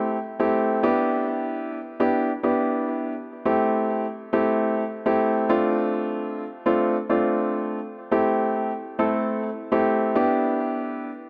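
Pop in A minor at 103 BPM, this short, driving and confident passage, cut from a longer piece, features a solo grand piano from 0.0 to 11.1 s, tuned slightly flat to A4 = 436 Hz. The piano sounds present and polished, sitting up front with a short sustain and some delay, while a lush hall reverb surrounds it. Its chords move through Am7, Em7 and Dm7 within a range from A3 to A4.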